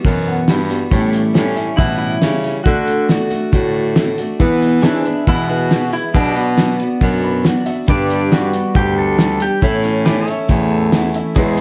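This honky-tonk and classic country excerpt moves at an easygoing, heartfelt 138 BPM in a straight 4/4. A cloth-damped drum kit sits up front with a thuddy, muffled, gritty character, pairing a fat snare and tight kick with hi-hat. A breathy baritone saxophone with light vibrato carries the bass line beneath a full-bodied, picked steel-string acoustic guitar. A twangy, compressed pedal steel guitar, played with fingerpicks and heard with slide and volume swells, enters at 0.9 seconds carrying a second line. A second pedal steel joins in the background at 4.8 seconds with sustained chords, colored by a subtle chorus. A very quiet, woody upright piano adds mellow fills with long sustain, and the whole takes shape in a moderate studio reverb with a dark production, the chords moving from Emadd9 through A7, D, E, Bm and G before landing on A.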